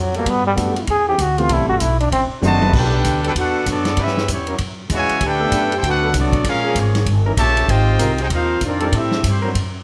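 A swinging 194 BPM big band groove in G major opens with woody pizzicato upright bass and a small-room vintage drum kit with a punchy kick, while a bright, up-front solo trombone with light vibrato carries the melody over a warm, deep-bassed grand piano and background trombone chords. A drum fill at 2.4 seconds hands the tune to a clear, smooth-topped trumpet section, backed by a soft-attack trombone section playing a second line. The energetic, joyful passage moves through jazz harmony such as Gmaj9, Eb7b9 and Ab69 in light reverb, cut from a longer piece.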